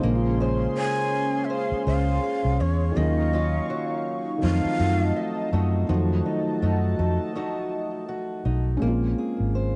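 Contemporary R&B at a slow 82 BPM in Bb minor, this short cut from a longer piece carries a sensual, longing mood, with a lightly swung 16th-note feel and chords moving from Bbm9 through Ebm9 and F7b9 before returning to Bbm9. Sitting up front, a vintage foam-muted electric bass lays down a round, punchy, dark low end, while a felt-muted upright piano accompanies with a soft, intimate tone where the action noise of its thick felt can be heard. A fingerpicked acoustic archtop guitar weaves arpeggios colored by tape echo, and a chorused pulse-width pad holds shimmering, retro chords with a slow attack and long release until 8.8 seconds. The breathy shakuhachi melody enters at 0.8 seconds and falls silent at 5.5 seconds, close-miked and end-blown, with audible chiff, vibrato and an unsteady, cassette-tinged quality under its own tape echo. Light reverb and the dulled top end of a home cassette recording give the whole track a hazy, lo-fi closeness.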